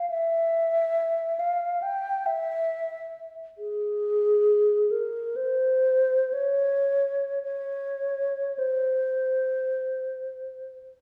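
This is a classical piece for unaccompanied alto flute, played in free time with an expressive, meditative and yearning mood. The alto flute carries the whole passage alone from 0.0 to 10.8 seconds, moving between Ab4 and G5. Its tone is mellow and hollow, pure in character, with a soft attack, vibrato and rolled-off highs. The instrument sits up front, surrounded by a wet recital-hall reverb of about 1.3 seconds that suggests a church or concert hall. The passage is cut from a longer piece, so it feels like a brief, suspended moment of reflection.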